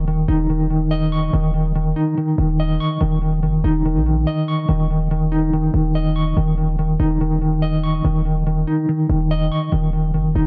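Hard-hitting yet melancholic, this short excerpt of half-time trap hip hop sets a mellow, dark electric guitar up front, its clean, fingered arpeggios shimmering with tremolo and analog delay over chords that hover around Dbsus2/Eb and Eb7 before landing on Ebm near 9.7 seconds. Beneath it, an 808-style bass sits equally forward, deep and boomy with a sine core, a noise layer and a fast, decaying attack. The sound is dry and gritty, with hardware-style transformer saturation and a digital ambience.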